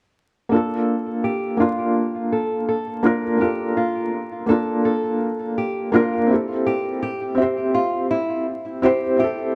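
Brooding, dark trip hop at 83 BPM in G dorian, this slice of a longer piece swings its sixteenths while a felt-muted upright piano, soft, mellow and intimate, plays accompaniment up front, colored by tremolo and tape echo. A small, fingerpicked nylon-string guitar with fresh strings weaves arpeggios beside it, its acoustic tone roughened by vintage 12-bit sampler grit, a low-pass filter and digital delay. Both parts play from 0.5 to 9.6 seconds inside a moderate echo chamber reverb with vinyl crackle as the harmony moves from Gm9 to a rootless Fmaj9 at 6.3 seconds.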